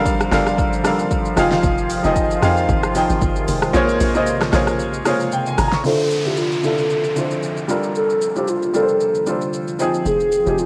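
A hollow, woody clarinet-like synth lead carries the melody from 5.9 seconds in this late-night, hypnotic amapiano excerpt in D minor at 114 BPM, its chorus, vibrato and tape echo floating over a deep, moody pad that pumps with sidechain and a clear, up-front baby grand piano that plays a fill just before the midpoint. Underneath, a tight, percussive log drum bass drives the opening drop and drops out at 5.8 seconds, while an overdriven deep house kit with punchy kick, fat snare and metallic hats runs throughout, its kick muted briefly before the downlifter and riser and a filter sweep carry the second half. The whole has a cassette-tape, home-recorded character, with moderate digital room reverb lending a digital ambience.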